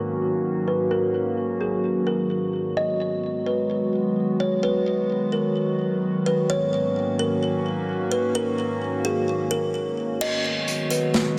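A woody, ringing kalimba melody, softened by a low-pass filter and trailed by digital delay, floats over a warbly, nostalgic tape-like pad of sustained G# minor chords with chorus and built-in reverb in this melancholic, spacious cloud-rap excerpt at 129 BPM in a half-time feel, where a filter sweep runs until a crunchy, saturated breakbeat kit of dark cymbals, hi-hat and snare arrives at 10.2 s, the parts set in a huge ambient space.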